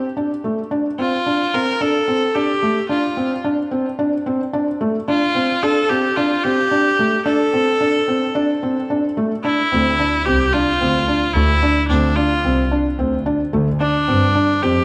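A bright, nasal solo viola carries the melody with light vibrato over a soft, felt-muted upright piano riff touched by tape echo and audible action noise in this cinematic, moving piano-and-strings electronica at 110 BPM in D minor, which builds until a drop at 9.4 seconds, when a smooth bowed double bass section enters at 9.7 seconds, the whole passage cut from a longer piece and set in a wet scoring-stage reverb.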